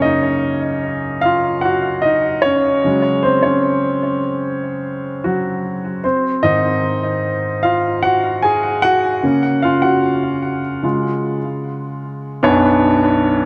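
A clear baby grand piano carries this short pop piece alone, sounding polished and present with long sustain, placed up front and touched by a delay. The mood is heartfelt and emotional, moving at 75 BPM in a straight 4/4 feel in Gb lydian. The piano ranges from B1 up to Ab5, working through Gb, Dbsus4, Ab, Gb/Db and Db before shifting to a Bmadd9 at 12.4 seconds, where a new section begins. A moderate concert hall reverb gives the sound a sense of space, while the overall production leans dark and warm. The clip runs about 13.5 seconds, cut from a longer piece.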